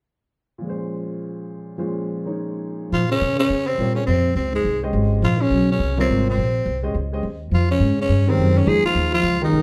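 Heard from further back in a wet studio room, this cool, hypnotic modal jazz excerpt swings over a clear, open baby grand piano, which plays alone from 0.6 seconds with a long sustain. At 2.9 seconds a growling, raspy tenor saxophone enters up front with the melody, while a dark trombone with light vibrato and a soft attack adds a breathy second line in the background. A woody pizzicato upright bass on steel strings fills out the low end up front until the cut at 9.6 seconds.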